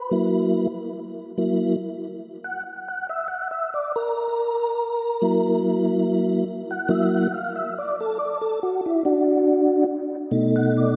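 A lush hall reverb soaks this dreamy, short cut from a longer blues piece, which moves at 47 beats per minute in a straight 12/8 with a rollicking, swaggering mood. A mellow, round and dark tonewheel organ plays alone and up front from 0.0 to 11.0 seconds, spanning B2 to F#5. It is lightly overdriven and colored by slow rotary speaker, chorus vibrato and tape echo. The harmony rests on F#7 before shifting to B7 at 10.3 seconds.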